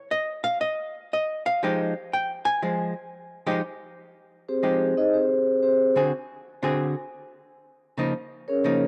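A home cassette recording with a moderate spring reverb gives this short cut from a longer jazz piece a moody, late-night atmosphere. At 120 BPM in 4/4 with a swung eighth-note feel in F minor, it opens with a miked and amplified archtop guitar alone, its clean, picked hollow-body tone sounding dark and electric and sitting up front as accompaniment. At 4.5 seconds the vibraphone enters with the melody, played with medium mallets and the motor off, giving a metallic, ringing voice with a boxy small-room quality that sits slightly louder than the guitar. The harmony moves from Fm9 to D7#11 and settles on Db69 near the end, and both instruments carry through to the close at 8.9 seconds.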